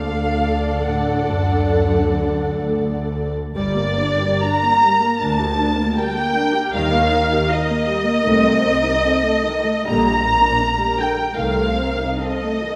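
From the first moment, a full string orchestra plays together: muted violins, violas, cellos and double basses open on a D chord in a slow, romantic movement in G minor. The mood is solemn and yearning, with a flexible rubato pulse in 4/4 that moves between 65 and 82 BPM. The violins carry the melody, while a second violin line sits up front and sounds stronger than the tune itself. The violas fill in the harmony with a dark, lush vibrato, and the cellos and basses hold the bass line, with the basses adding a soft-attacked, warm floor beneath the cellos' lighter vibrato. After the opening phrase, a new section begins at 3.6 seconds on G minor, moving through E-flat and shadowy diminished harmonies before the cellos and basses stop at 12.1 seconds and the upper strings ring on to 12.8 seconds. The con sordino playing gives the ensemble a veiled sound, set in a reverberant recital hall, and this brief passage is cut from a longer piece.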